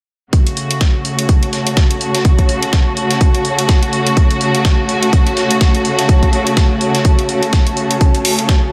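Light reverb and a digital ambience surround this gritty, aggressive bass house excerpt, cut from a longer piece and held on a single F# minor chord with a swung sixteenth-note feel. A punchy, layered electronic kick sits up front and carries the most weight, with studio reverb on it. A lush, bowed symphonic string section holds sustained chords with vibrato and a smooth top, also up front, its sound pumping against the sidechain and softened by a low-pass filter. A dusty, sampler-style kit adds a fat, compressed snare and filtered hats, joined by bright electronic hi-hats from 0.5 seconds. From 0.7 seconds an ethereal, airy pad of detuned sawtooth and triangle tones with a noise layer fades in slowly above the strings, mellow and chorused, breathing with the same sidechain pump through to the end at 8.7 seconds.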